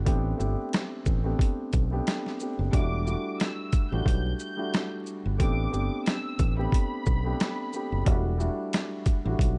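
A swung 90 BPM boom-bap groove in E minor sets a dark, tough mood, with a gritty, pitched-down sampler-style kit of thumpy kick, medium-tuned snare, hi-hat and shaker sitting up front beside a round, direct fingered electric bass, while a mellow, filtered concert grand piano comps through Am11 and Em11 chords and a lush, vibrato-rich studio violin section carries the melody from 2.7 to 8.0 seconds with a slapback echo, all in a dry mix dusted with vinyl crackle and dulled at the top, cut from a longer piece.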